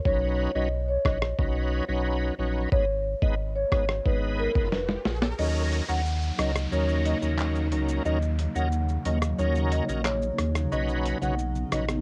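Dancehall at 90 BPM in Eb minor, sultry and hypnotic, cut from a longer piece and heard with light reverb on a home cassette recording, where a gritty, tape-warm sampler-style drum kit with a thumpy kick, handclaps, rim click and shaker sits up front beside a deep sine-and-triangle sub bass with octave. A bright, shouting tonewheel organ with overdrive, chorus vibrato, slow rotary speaker and sidechain pumping carries the accompaniment over chords moving from Badd9 to Abm and Ebm7, while a mellow soft-mallet marimba through analog delay plays the melody. After a drum fill at 4.7 seconds the kick drops out from 5.4 seconds, a dark, blurred granular cloud pad with built-in reverb and its own sidechain pumping enters at 6.1 seconds, and an electronic riser and downlifter runs from 4.0 to 10.7 seconds.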